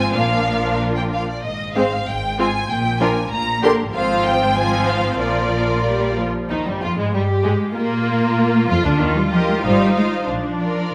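Spirited and lively, this short cut from a longer classical-period movement for string orchestra moves at a quick 94 BPM in a straight 2/4. The first violins carry the melody up front, their clear, focused tone touched with vibrato, while a second violin line adds a more intense voice beneath them. The violas fill in the accompaniment with a lush, bowed sound, and the cellos supply a rich, close bass that the double basses deepen with a woody warmth. The harmony circles around Bb with turns through Ab, Eb and minor chords over Ab and Bb, and a brief pause in the chord progression at 6.5 seconds marks the return of the opening material. All five sections play together throughout the 10.9 seconds, set in a concert hall with moderate reverb.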